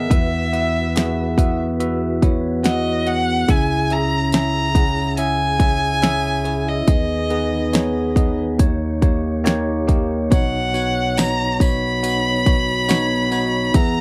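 A slow, straight 70 BPM pulse in 4/4 from a punchy, fat-snared pop drum kit, electronic and layered, sits up front in this heartbroken, melancholic pop ballad excerpt, with a jingly tambourine joining in the background at 10.3 seconds. A bell-like tine electric piano with phaser carries the accompaniment, a soft, flute-like tonewheel organ with key click and fast rotary speaker holds sustained chords beneath, and a single bowed violin sings a smooth, vibrato-rich melody high above. The chords move from Esus2 through C#m, G#m/D# and D#7 to Badd9, all captured in a dry, close 1970s-style studio sound.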